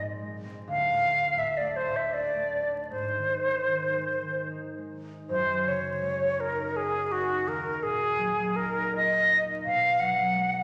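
Dreamy and pastoral, this fragment of an impressionist classical duo drifts in a rubato 3/4 at 73-91 BPM, as an airy, bright silver flute carries the melody up front with soft attacks, expressive vibrato and lifted highs over a fingerpicked, ringing concert harp set lower in the mix, moving from Ab lydian into Gb major at 5.3 s through chords such as Dm, Gbsus2 and Ebmadd9, the whole duo bathed in a wet scoring-stage reverb with a layer of vinyl crackle.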